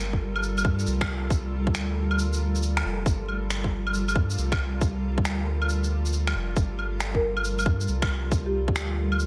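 A woody, mellow marimba played with soft mallets arrives with tape echo at 7.1 s over a cloudy, detuned granular pad pumping through a Gm9 chord, a deep, round sub bass held up front, and a tight, tape-warm kick with layered electronic claves, shaker and finger snaps re-recorded in a large room, forming this nocturnal, rainy future garage excerpt at 137 BPM in G minor with swung 16ths, light digital ambience and vinyl crackle.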